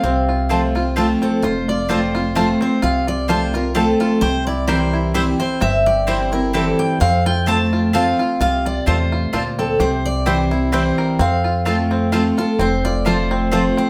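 A swung waltz lilts in three, driving this virtuosic, rustic bluegrass passage cut from a longer piece, with a bright picked steel-string guitar carrying the melody over a second, full-bodied guitar whose accompaniment carries audible finger squeak. Twangy fingerpicked banjo arpeggios and a thumpy gut-string upright bass played pizzicato fill out the sound, while a woody, double-strung mandolin joins with stabs at 0.5 s. The guitars and bass sit up front, and a wet studio reverb places the band further back in the room.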